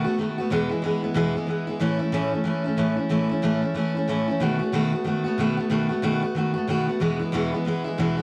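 Upbeat and retro, this brief rock excerpt features a lone picked steel-string acoustic guitar, full-bodied and up front with audible finger squeak and tape echo, swinging at 184 BPM through B7, E, A, B7 and back to E in a small room washed with moderate spring reverb.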